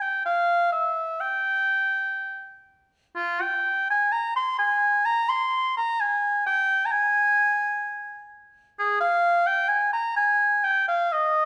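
A solo oboe with a warm, classical tone sits up front, playing alone from 0.0 to 11.5 seconds across a span from F4 to C6 in this short passage cut from a longer baroque-style fantasia. The mood is flowing and introspective, with a rubato feel over a slow 64 BPM in 3/4, and the instrument is tuned to A4 = 437 Hz. A wet stone room, its reverb ringing for about 1.3 seconds, surrounds the line with a resonant depth.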